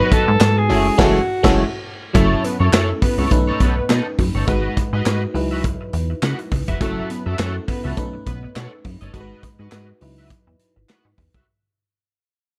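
A breathy alto saxophone with slapback echo carries the melody at the start of this late-night, danceable early-eighties boogie funk clip, then drops out at 1.8 seconds; a band accent from 1.0 seconds gives way to a fade-out from 2.1 seconds, as a glassy FM electric piano, a bright, twangy electric guitar at the edge of break-up, a punchy, plucky analog bass, a modern studio drum kit with handclaps and a punchy kick, and bold analog synth brass set in the background play over swung sixteenths in a small room.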